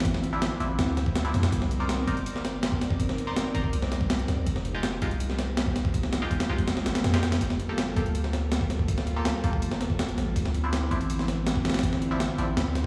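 Drenched in large studio reverb as if played on a big sound system in a bare room, this atmospheric, raw drum and bass and jungle excerpt sets a gritty, pitched-up breakbeat sampler-style drum kit with a thumpy kick and tape-warm compression up front, over a deep, mellow 808-style sine bass and an airy, breathy pad with chorus and a slow attack holding sustained minor ninth chords, while a nasal, band-passed sawtooth chord stab treated with phaser and dub echo enters at 0.3 seconds.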